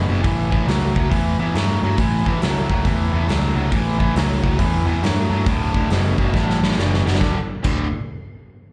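A swung 138 BPM groove in 4/4 drives this gritty blues rock and southern rock power-trio excerpt in D major, cut from a longer piece and heard as a live gig through a club PA with light reverb. A bright, overdriven electric guitar, double-tracked and up front with slapback echo, picks a low riff from the opening second to about 7.9 s. Beneath it, a dark, round vintage bass, foam-muted and punchy, holds the low end through the same span. The huge arena kit enters at 0.2 s with a punchy kick, a medium-tuned snare, hi-hat and bright crash cymbals in a big, natural room. After the harmony moves from A7 to D at 5.5 s, the kit lands a fill from 6.3 s, and the music settles on a D5 chord at 7.2 s.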